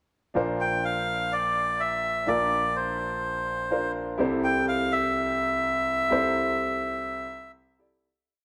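A reedy, breathy melodica carries a motif-based melody with tape echo over a concert grand piano's deep, long-sustaining held chords in close voicing, moving from Bbadd9 to C6 in this short, uplifting and romantic pop piece, set in a wet echo-chamber reverb and fading out from 6.1 seconds.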